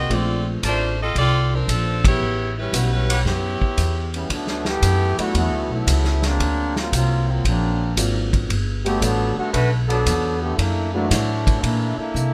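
Light reverb surrounds this joyful big band swing excerpt at 115 BPM, where a vibrato-rich saxophone section leads with the melody and clear trumpet stabs over woody upright piano, pizzicato upright bass and a vintage drum kit with dark cymbals and a punchy kick, punctuated by a band accent at 1.9 seconds, before a tight trombone section takes over the tune as a solo in D major from 4.3 seconds, closed by a drum fill at 12.2 seconds.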